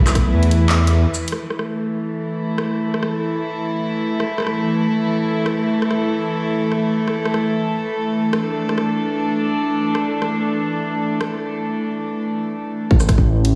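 Tense and spacious, this half-time drum and bass passage, cut from a longer piece, opens on a drop before settling into a long stretch carried by a rich chamber string ensemble. The bowed strings hold sustained chords with a soft attack and a sul tasto tone that sounds pure and floating, sitting close and up front while sidechain pumping makes them breathe with the beat. A deep, rumbling detuned saw bass with a dark, beating unison edge appears only briefly, at the very start and again from 12.9 seconds, when the strings stop. The layered electronic kit adds handclaps, rim clicks, shaker and bright, filtered hats with an overdriven grit, set beneath the strings, while a tight, overdriven kick lands at the opening and returns at the close. A long hall reverb soaks the mix in a dreamy haze, and a break from 11.5 seconds leads into the final return of bass and kick.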